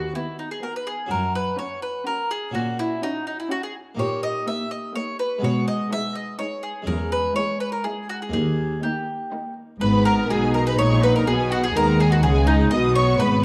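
A bright, picked bowl-back mandolin carries the melody up front over a full, plucked Flemish-style harpsichord and a smooth, lush cello section in this stormy, driving baroque-style concerto movement in 3/4, with two rich, vibrato-laden violin sections on melody and second line and a distant, soft-attack viola section filling in, and a distant bowed double bass section entering at 9.8 s to deepen the bass, all set in a wet recital-hall reverb with a dark, warm production.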